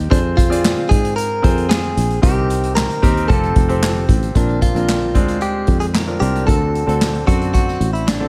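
A straight 4/4 groove at 113 BPM drives this short, hopeful piano-driven pop excerpt, with an acoustic drum kit of punchy kick, medium-tuned snare, hi-hat and handclaps played with bundle sticks in a roomy studio space, alongside a round, foam-muted fingered electric bass. A clear, polished concert grand with deep low end and short sustain supplies the accompaniment, while a bright, clean, picked electric guitar recorded direct and compressed carries the melody between D4 and Bb4. The harmony moves from Fm through Cm7 and Fadd9 into a second section at 4.4 seconds built on Bbadd9 and D7, all set in light studio reverb.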